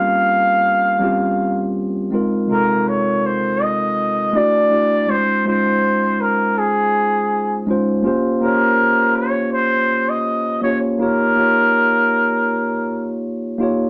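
R&B with a smooth, late-night mood, this short cut from a longer piece moves at an unhurried pace with a light swing. A breathy flugelhorn carries the melody in a soloistic jazz style, its soft attack, gentle vibrato and whispered tone giving it an intimate, roomy quality. Beneath it, a mellow tine electric piano supplies clean, direct accompaniment that sits up front in the mix. The harmony drifts through lush chords such as Bbm69, Ab69 and Dbmaj7 before settling on Eb7 near the close. The flugelhorn finishes its line at 13.2 seconds, leaving the electric piano to ring out alone until 13.9 seconds, all bathed in a short, wet studio reverb.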